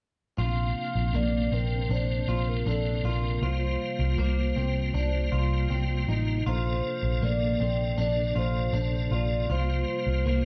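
A dark, warm production with a small room's reverb frames this dreamy, blissful dream pop fragment in Bb major at 79 BPM, cut from a longer piece. A round, foam-muted picked electric bass sits up front, beneath a piping tonewheel organ holding sustained chords through chorus vibrato and a fast rotary speaker, and a slightly broken-up, compressed electric guitar playing arpeggios with subtle chorus and delay. Above them, a warbling, detuned lead blending square and sawtooth tones carries the nostalgic melody through chorus and delay, while the harmony moves from Bbadd9 to C7sus4 and Bbmaj9.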